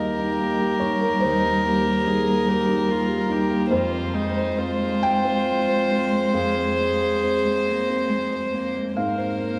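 A single violin carries the melody, up front and close, its soft attack and airy sul tasto bow giving a pure, floating tone over this reflective, longing neoclassical passage for piano and strings. A felt-muted upright piano sits equally forward as accompaniment, its thick felt lending a mellow, intimate, muted sound across a broad span of the keyboard. Beneath the violin, a lone viola adds rich, sul tasto support with a similarly gentle attack, while a single cello plays a dark, woody second line with vibrato, also bowed over the fingerboard. The music moves in six-eight with rubato and uneven beats, its harmony passing from Eb to F minor at 3.7 seconds and settling on Abadd9 at 9.0 seconds. All four parts play together throughout this short fragment of a longer piece, bathed in the long, wet reverb of a church.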